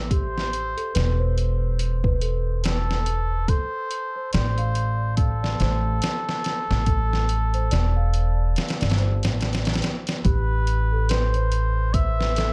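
A dark, warm production sits in a small room, with a pitched-down, compressed sampler-style drum kit up front, its thumpy kick and medium-tuned snare carrying a gritty, re-recorded edge alongside the hi-hat. This cut from a longer trip hop piece moves at 71 BPM in 4/4 with a swung sixteenth-note feel, its hypnotic, shadowy mood settled in A minor and slightly below standard pitch. A woody pizzicato upright bass, also up front, holds the low end from the opening, while a bell-like celesta with soft felt hammers spins delicate, sweet arpeggios coloured by 12-bit sampler grit and tape echo. From 0.1 seconds, a cup-muted trumpet carries the solo melody in a veiled, smooth classical style, its soft tone roughened by the same sampler grit and trailed by dub echo. The harmony moves from Am9 to Dm7/A at 3.5 seconds and returns to Am9 at 10.2 seconds as a new section begins.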